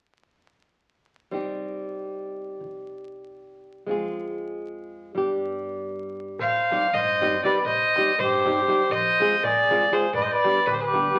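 The recording sounds like a very old 78 rpm record, with vinyl crackle over a wet large-studio reverb. This fragment of a longer piece is fiery, virtuosic Balkan wedding-band folk in C harmonic minor, moving in a straight 5/8 at 239 BPM counted in eighths. From 1.3 seconds, an up-front flamenco guitar is fingerpicked as accompaniment, its finger squeaks audible. Beneath it, a woody, thumpy upright bass is plucked in the background, and the pair cycle through C minor, F minor and G. At 6.4 seconds, a rich, earthy bowed fiddle takes the melody up front yet sounding distant, while a reedy, mellow accordion plays a smooth, dark second line. A crisp metal-shell darbuka, struck with hard hands and heard close and dry in the background, adds percussion as the chord cycle repeats.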